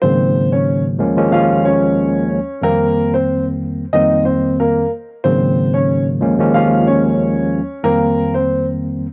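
From the first moment, an upright piano carries the melody over a tine electric piano in this gritty, dark hip hop fragment with a gently swung feel, both parts up front and dulled by cassette tape filtering. The woody, smooth, vintage piano sings in its middle register while the worn, slightly out-of-tune electric piano lays down clean, direct chords moving through Ab9sus4, Eb9sus4 and F9sus4. A moderate studio reverb frames the homemade cassette sound, and the piano drops out at 8.6 seconds, leaving the electric piano alone until 9.1 seconds.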